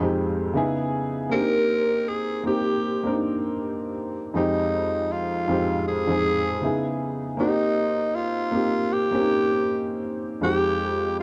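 A dark, warm production with a short studio reverb frames this melancholic, hazy hip hop excerpt, where a breathy, raspy tenor saxophone carries a jazz-style melody through low-pass filtering, plate reverb and analog delay over a woody, slightly detuned upright piano with a cassette-tape patina, both parts up front and playing throughout its 11.2 seconds as the chords move among Fm9, Dbm7 and Cm7 with a light swing.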